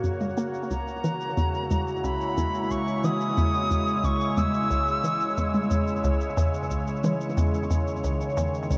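Bathed in a huge, wet reverb, this cosmic, expansive fragment of sequencer-driven ambient space music moves at 90 BPM in C# dorian, with an up-front, morphing wavetable pad holding sustained chords over a bouncy, detuned hollow square pluck riff swept by a filter, dry overdriven electronic shaker and toms, and a distant, pure silver concert flute singing its melody with vibrato from 0.7 to 5.7 seconds.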